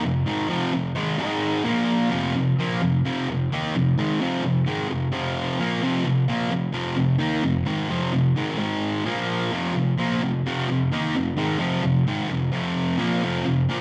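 Raw and gritty, this rock excerpt is carried entirely by a lone fuzz guitar, played in a straight 4/4 feel. The electric guitar is picked and double-tracked, sitting up front with a warm, distorted fuzz tone and a trail of analog delay. Its part ranges from F2 to Eb4 and leans on an F minor chord, briefly shifting through Ab5 and Bb5 power chords before settling back. A short opening passage gives way at 2.1 seconds to a longer stretch that returns to the same chord movement around 8.6 seconds. A small room's reverb wraps the guitar in a wet, close ambience, and the passage runs to 13.8 seconds as part of a longer piece.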